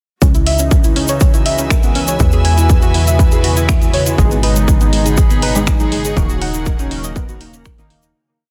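A melodic techno piece with a melancholic, driving mood, built as one continuous drop over a straight four-on-the-floor pulse and moving through C#madd9, E, G#m and D#m7. An overdriven, punchy kick sits up front, joined by a dry analog drum machine playing closed and open hats with a snapped backbeat and a grainy, hand-played tube shaker. A plucky sawtooth bass holds the roots beneath a soft, round pluck repeating a dark step-sequenced arpeggio through chorus and delay. A lush, airy pad sits in the background while an intimate, close chamber string section bows sul tasto, all breathing with sidechain pumping. At 3.1 s a very quiet, swarming granular drone creeps in on C#3, and from 4.2 s a thick, nasal unison lead carries a repeating riff with vibrato alongside brassy stabs that push syncopated power chords. The mix is dry and dense, heavily limited, and fades out from 5.5 s to the close.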